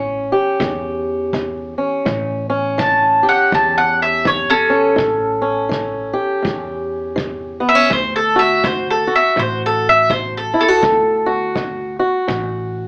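Heard through an AM-radio filter with a touch of light reverb, this short cut from a longer acoustic country blues tune rolls along at 82 BPM in a laid-back, rollicking swing, moving from A7 to D at 7.9 seconds. Up front, a bright, round-toned mandolin carries the melody until 11.3 seconds, backed by a boxy, fingerpicked swing-style acoustic guitar. Beneath them, a growly, thumpy pizzicato upright bass with a woody edge sits low in the mix, and a distant, roomy kick drum played with brushes enters at 0.6 seconds.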